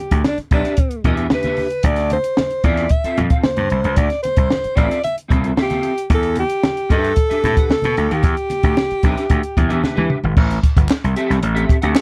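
Funk excerpt with a funky, driving feel, where a breathy, whispered alto saxophone sings an intimate, vibrato-laden jazz melody up front over a gritty, overdriven slap bass, a punchy compact cocktail kit with dark cymbals and a high-tuned snare that closes the first part with a drum fill at 9.8 seconds, low-tuned thick-skinned congas, a scooped clean electric guitar with ensemble chorus, and group handclaps entering at 10.9 seconds, all captured in a dry, close 1970s-style studio sound as the chords move from Em7 through Dm9 to Am7.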